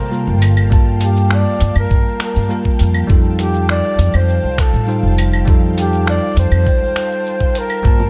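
Sunset chillout at 101 BPM in 4/4, this smooth, relaxed excerpt moves from Gm9 to F9 at 3.1 s while a breathy, distant flugelhorn carries the melody with vibrato and scooped notes, trailed by tape echo over a bell-like, clean tine electric piano and an ethereal pad of detuned, chorused tones. A woody pizzicato upright bass sits up front alongside a gritty, thumpy electronic kick entering at 0.7 s, while a dusty, compressed sampler-style kit supplies claves, finger snaps, hi-hat and shaker in studio reverb. Soft-handed vintage congas appear only in the background at 8.0 s, and the overall sound is dry and close.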